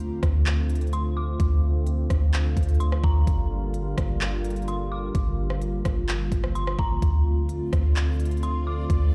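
An overdriven, up-front trap kit with a knocking kick, crisp hats, handclaps and rim clicks drives this hazy, spacious cloud-rap excerpt in D minor at 128 BPM with a half-time feel, over a round, sine-toned 808-style bass, while a moody, detuned sawtooth pad with chorus and sidechain pumping sustains Dm7 and Gm7 chords, an eerie, inharmonic FM bell carries the melody through chorus, low-pass filtering and digital delay, and a reversed, granular swelling texture glimmers in the background from 7.4 s, all set in a large studio reverb.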